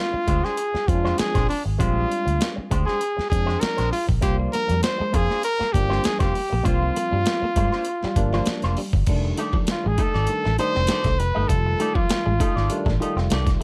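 Funk with a strutting swagger, this excerpt opens on a break where a bright, forceful trumpet melody rides over barky electric piano stabs bathed in lush chorus, a twangy envelope-filtered guitar, a dark, round muted bass and a gritty, tape-warm breakbeat kit with a thumpy kick, before a scooped clean guitar riff with spring reverb slips in behind at 4.4 seconds and the punchy trumpet takes a jazz-style solo from 9.1 seconds.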